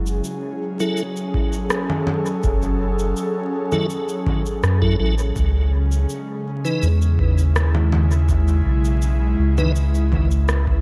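A round, up-front dub sub bass anchors this hazy, deep ambient dub excerpt, moving from F#m7 to C#m9 at 5.4 seconds beneath an airy, breathy pad with chorus, piping tonewheel organ stabs with key click, chorus vibrato, fast rotary speaker and dub echo entering at 0.8 seconds, tape-tinged electronic shaker, rim click and congas treated with dub echo, and an overdriven analog kick arriving at 1.3 seconds, all set in light reverb over a bed of vinyl crackle.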